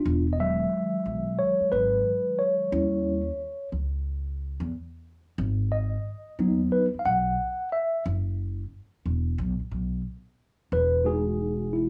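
Hip hop at 90 BPM in E major, with a swung sixteenth-note feel and a mood that is both warm and cool, in this excerpt cut from a longer piece. A mellow, clean tine electric piano sits up front and carries the featured lines from start to finish over chords moving from Emaj7 through D#7b9 and G#m7. A dark, woody pizzicato upright bass joins at 0.1 seconds. A break arrives at 8.1 seconds, with a chordless stretch before an Emaj9 at 10.7 seconds, all set in a small room with moderate studio reverb.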